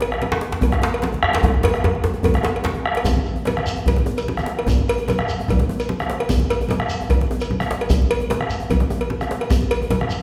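A dark, up-front bombo in a large-room sound anchors this powerful, festive West African drum ensemble excerpt at 149 BPM in a straight 4/4. A close, dry metallic cowbell and a deep djembe with metal rattles play over it, while ringing, low-tuned congas struck with hard hands sit in the background. A second, tight and cracking djembe plays with soft hands up front from 0.3 to 2.7 seconds, overlapping a drum fill that runs from 1.4 to 3.1 seconds. A grainy, mellow, compressed and saturated shekere enters at 3.1 seconds, all within a wet recital-hall reverb.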